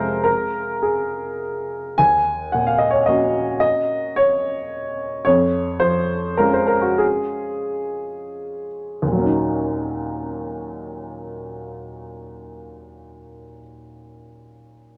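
Melancholic and intimate, this short excerpt of neoclassical minimalist piano unfolds in Eb minor at a rubato 3/4, drifting between 86 and 112 BPM. A solo upright piano carries the whole piece from 0.0 to 15.0 s, ranging from Eb2 up to Ab5, with a woody, polished tone that sits up front and present. The harmony moves from Fm to Ebm7, then to Db/F, before returning to Ebm7 at 9.0 s as a new section begins. The tempo slows between 4.4 and 9.0 s, letting the opening phrase settle before the music moves on. A wet, large studio reverb surrounds the piano, adding a roomy tail while the instrument itself stays clear and close.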